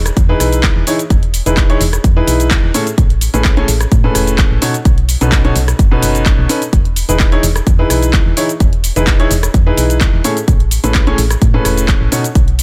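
A round, dark FM bass opens this euphoric piano house excerpt in E major at 128 BPM, sidechain-pumping alongside a punchy, up-front electronic kick, while a tape-warm house kit adds handclaps, hi-hat, rim click and shaker from a small room. A clear, woody upright piano enters at 0.3 seconds with a joyful riff, pumping and trailed by digital delay as the chords cycle through Emaj7, Amaj9 and B9 in a digital ambience.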